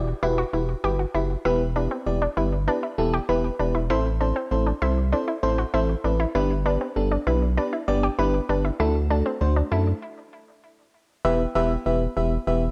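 Pop at 98 BPM in E minor with a driving, nocturnal mood, cut from a longer piece: a soft, round, dark FM electric piano with chorus sits up front over a rubbery, hollow, bouncy square bass. A nasal analog pluck treated with chorus and tape echo plays arpeggios until 10.0 s, all moving through Em, Am, G and D under light reverb and digital ambience.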